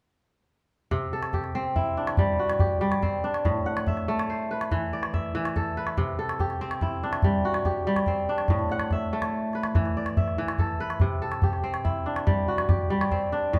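Hypnotic and warm, this West African traditional excerpt in a straight 12/8 sets a mellow, ringing kora, fingerpicked in crisp, up-front arpeggios across a range from A2 to F#5, beside a small, close calabash, both playing from 0.9 to 13.6 seconds over an alternating C and Am harmony, with the band heard live together in one room under a lush, large-studio reverb.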